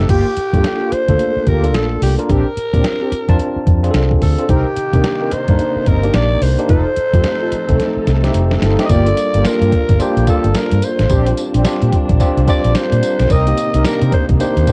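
A raspy alto saxophone carries the melody over a slick, punchy R&B new jack swing groove at 109 BPM, backed by a worn, slightly out-of-tune tine electric piano, a round, foam-muted fingered electric bass up front, mellow synth brass stabs with chorus and tremolo, and a gritty, pitched-down boom bap sampler-style drum kit with a fill at 7.8 seconds, while a dark, bowed string section enters in the background at 4.5 seconds, in this lightly reverberant home cassette recording cut from a longer piece.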